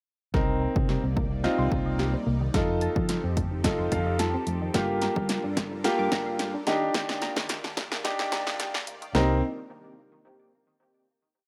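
This short, complete dance-pop piece sounds like a rough home demo mix, high-pass filtered and set in light digital ambience. At 109 BPM in straight 4/4 and C dorian, it drives with energy as a build-up, a drum fill and a filter sweep run from 0.3 to 9.1 seconds over Cm7, F7, Gm7 and Ebmaj7, then lands on a final Cm7 chord. Up front, a clear concert grand piano with audible action noise and long sustain plays close-voiced pushed chords, adding a fill at 3.6 seconds, while a punchy analog drum machine lays down a syncopated pop beat of kick, snare and hi-hat. A dark, round fingered electric bass plays a syncopated figure underneath. In the background, a lush detuned supersaw pad with phaser holds slow-attack chords, and a tight, mellow sequenced synth with chorus and tape echo spins falling sixteenth-note arpeggios. The piano, bass, pad and synth all pump with sidechain compression, giving the build its breathing push.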